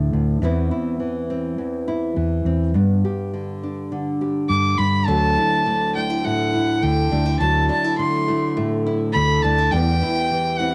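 Warm and peaceful, this acoustic folk piece opens with a bright, fresh-stringed nylon-string guitar fingerpicked in classical style with a touch of finger squeak, over a round, dark, up-front hollow-body electric bass. An earthy, rich bowed fiddle with light vibrato joins at 4.5 s to carry the melody, and a boxy old ladder-braced acoustic guitar enters at 5.1 s picking arpeggios. The guitars and fiddle carry a cassette-tape tinge, set in light reverb and studio ambience on a homespun home recording.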